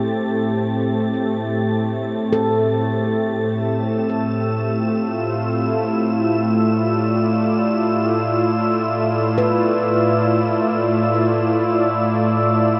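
A detuned, warbling analog pad with chorus sits up front, holding sustained chords from Am7 to Dmadd9/A over this melancholic, spacious ambient excerpt at 51 BPM, while a breathy, wind-like tuned noise texture fades in high above and a ringing, meditative handpan plays soft arpeggios with delay in the background from 2.3 to 10.5 seconds, all bathed in a huge reverb that suggests a vast, echoing space.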